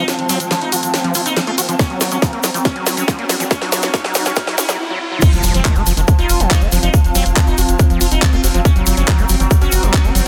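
This psychedelic trance excerpt at 140 BPM opens on a buzzing, shimmering sitar melody through phaser and tape echo, over a swarming, warbling drone and a squelchy, gritty acid bass riff, both under a filter sweep as the build-up begins. An ethereal, airy pad sits very quietly in the mix, while a garage drum kit with a cracking snare and bright hats plays a fill alongside a grainy egg shaker, and a riser climbs in the background from 0.5 seconds. A tight, up-front electronic kick enters at 1.8 seconds, and after a brief break the drop lands at 5.2 seconds with an impact. There a deep, round analog bass joins, dark and up front, as the sitar, drone and acid bass pump with sidechain compression. The mood is alien and intense, and the dense, heavily limited master gives only a light touch of reverb.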